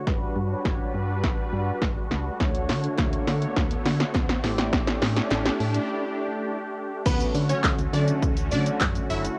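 A lightly reverberant, cassette-hued home recording carries this summery, euphoric dance-pop passage in D major at 103 BPM, cut from a longer piece, as an up-front, dry analog drum machine with punchy kick and snare drives a build-up and drum fill over a round, dark FM bass, a brassy synth brass with chorus, and an evolving, detuned supersaw swell, all three sidechain-pumped. A very quiet riser and a crisp, vintage group handclap join in the build, which moves through Gmaj7, Dmaj7 and A7sus4 to a break at 5.9 seconds. At the drop at 7.1 seconds, a lush, bright unison pluck with phaser takes the melody over Dmaj7.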